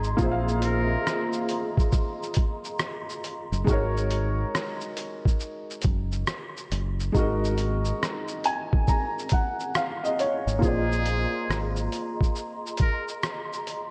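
A felt-muted upright piano, deep dub electric bass, a sampler-style drum kit and a hollow flute ensemble open this reflective, nostalgic lo-fi hip hop excerpt together at 69 BPM in Bb minor, with a swung sixteenth-note feel. The drums sit up front with a muffled, pitched-down character, a thumpy kick, hi-hat, rim click and shaker, while the round, punchy bass holds the low end until 11.9 seconds. The soft piano carries the accompaniment through cassette-tape coloring and a low-pass filter, moving from Bb9sus4 to Ab9sus4 and adding a fill from 8.0 to 10.6 seconds. A trumpet with a metal mute offers a brief, buzzy phrase early on, then returns at 10.6 seconds with breathy, jazz-style lines and light vibrato through an analog delay, as the airy flutes come back on sustained chords and the harmony returns to Bb9sus4. A plate reverb soaks the whole mix in a dreamy haze.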